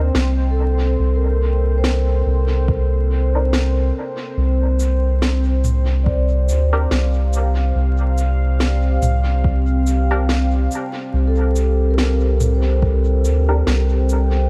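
A round, up-front sub bass with tube saturation anchors this spacious, meditative ambient dub excerpt, sitting beneath a dark, detuned sawtooth pad whose sustained chords move from Cm7 to Bb6/C. Muted, warbling chord stabs with lush chorus and dub echo drift through the mix, while a metallic, ringing vibraphone plays mellow arpeggios from 0.5 s, also sent through dub echo. An organic electronic kit of shaker, woody snare and toms carries its own echo, a soft electronic kick joins at 2.7 s, and vinyl crackle colours the dry recording.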